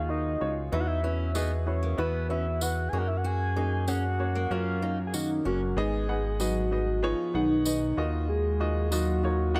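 A straight 4/4 pulse at 95 BPM carries this warm, uplifting piano-driven pop passage: a round, full-bodied synth lead with chorus and phaser sings the melody over a woody, polished upright piano and a glossy, dark chorused synth bass, while a fingerpicked steel-string acoustic guitar riff with audible finger squeak plays from 0.7 to 5.6 seconds and a jingly, close tambourine enters at 1.3 seconds, all within a small room ambience as the harmony moves from D#madd9 through Esus2 and F# to G#m before returning to D#madd9.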